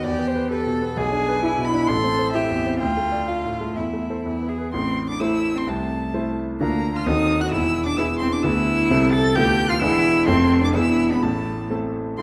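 A reverberant recital-hall sound frames this urgent, dramatic classical-period piano trio movement in A minor at a quick 129 BPM in 2/4 with rubato. A dark, woody violin carries the melody with vibrato, while a cello played sul tasto adds an airy, softly attacked second line. An up-front, vintage concert grand supplies clear accompaniment with deep bass and audible action noise, and the harmony drives through diminished and dominant chords back to A minor by 11.2 seconds of this brief cut.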